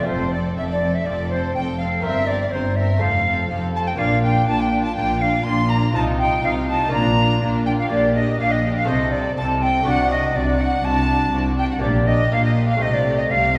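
A hall's lush, wet reverberation surrounds this brilliant, festive baroque-style concerto passage at 122 BPM, cut from a longer piece, which moves from F major into G minor at 7.9 s. A pure, soft-attacked silver flute carries the melody with vibrato, shadowed by a focused chamber violin section on a second line and a distant studio violin section in the background. A smooth viola section, an even cello section and double basses supply the harmony and bass alongside a delicate, bright, fingerpicked gut-strung lute in the background.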